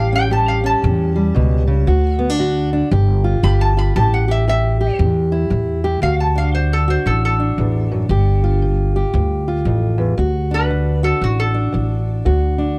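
A lap resonator guitar carries the melody from the start, its bright, metallic, nasal slide tone played with a steel bar and fingerpicks, sitting up front in a gritty, soulful piece of acoustic country blues. Beneath it, a fingerpicked steel-string acoustic guitar supplies a dark accompaniment, its finger squeaks audible in the close mix. An upright bass, plucked on steel strings, adds a woody, growly low end. The tune moves at 116 BPM in 4/4 with a swung eighth-note feel in D major, passing through chords such as A7, G7 and D. The form repeats the same section twice, with the resonator taking a bar-played solo through both, until it drops out at 12.4 seconds while the guitar and bass carry on to 12.8 seconds. The sound is dry and intimate, like a close 1970s-style studio recording, and the clip is cut from a longer performance.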